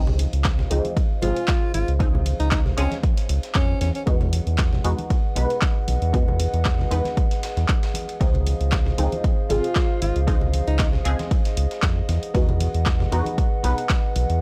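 A clear, close-miked alto saxophone plays soulful jazz-style phrases with vibrato and scooped notes and tape echo, entering at 1.2 s and returning at 9.5 s over a deep house groove that alternates between Dbmaj9 and Emaj9 chords. An up-front, round analog bass and a dry, overdriven electronic kick anchor the mix, joined by handclaps and hi-hat from a punchy analog drum machine, low-tuned congas in the background, and a very quiet, gritty sampler-style breakbeat kit with ride cymbal and snare. Nasal, detuned dub chord stabs with phaser, ensemble chorus and analog delay and a moody, 12-bit-grained pad with slow attack and long release both pump with sidechain compression, all captured in a dry, gritty hardware recording cut from a longer piece.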